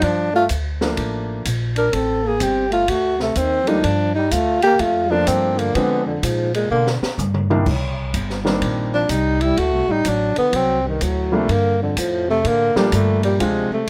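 A mellow tenor saxophone carries the melody up front in this late-night, swinging small-group jazz piece, cut from a longer performance, its soft attack, light vibrato and scooped notes sitting close to the ear. Beneath it a warm trombone plays a second line, also shaped by vibrato and scooped notes. An upright bass with a woody, dark pizzicato tone anchors the harmony. An open acoustic drum kit adds dark cymbals, a high-tuned snare, a boomy kick and toms, and a drum fill at 6.7 s leads into the second section. A polished concert grand piano with deep bass and short sustain enters at 0.8 s to accompany, and moderate studio reverb gives the group a natural room sound.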